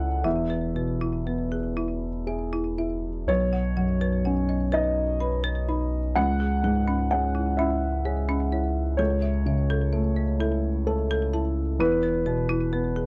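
In a rubato 6/8 at 42 BPM, this intimate, hopeful neoclassical fragment in E major pairs a dark, mellow baby grand piano's long-sustaining accompaniment up front with a deep, punchy sine sub bass, while a folk marimba with hard mallets adds woody, rustic arpeggios with slapback echo from 0.2 seconds, all captured in a dry, close 1970s-style studio sound as the harmony moves from E through Badd9, C#m and A/C# to E5.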